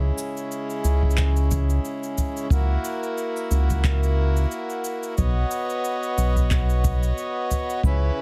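A reedy, breathing hand-pumped harmonium opens this wistful, autumnal folktronica excerpt with sustained chords up front, joined at once by a round, deep analog bass, dark and sustained, moving through C#m, F#7/C# and Badd9. Electronic shaker and handclaps with a tape-warm character enter at 0.2 seconds, and a boomy acoustic kick sits in the background from 1.0 seconds, setting a gently swung 90 BPM groove in 4/4. Light reverb and a layer of vinyl crackle surround the short passage.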